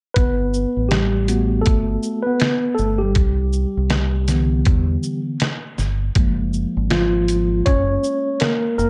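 A swung 80 BPM groove in 4/4 sets this cool, smooth jazz-hop fragment in motion, carried by a gritty, compressed, pitched-down sampler-style drum kit with a thumpy kick, medium-tuned snare, hi-hat and shaker. A round, dark fingered electric bass sits up front beneath a mellow, clean tine electric piano, which enters at 0.1 seconds and takes a solo from 0.2 seconds as the harmony moves through Gmaj9, Cmaj9 and F#maj9. Light reverb and digital ambience wrap the dark, warm production.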